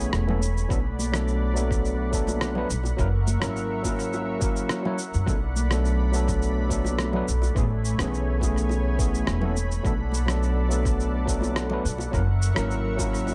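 Sunset chillout in B dorian at 105 BPM, smooth and relaxed, built on an up-front barky overdriven tine electric piano through a combo amp with dub echo, a woody pizzicato upright bass, a lush detuned unison pad with chorus holding sustained chords through Amaj9, Bm7 and F#7, gritty sampler-style cabasa and rim click with analog delay, soft-handed vintage congas and bongos in the background from 0.3 seconds, and a thumpy overdriven electronic kick from 0.7 seconds, all set in an echo-heavy mix with light reverb.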